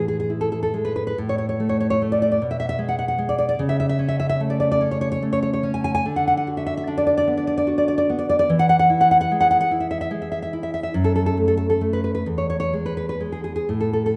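Bathed in the wet reverb of a church or concert hall, this tender, warm romantic passage for solo classical guitar, cut from a longer piece, unfolds in a rubato 6/8 at roughly 40-52 BPM, with a dark, full-bodied, fingerpicked nylon-string guitar placed up front, ranging from E2 to G#5 as it moves through chords such as Bm6, A/C#, Bm/D, E and F#m.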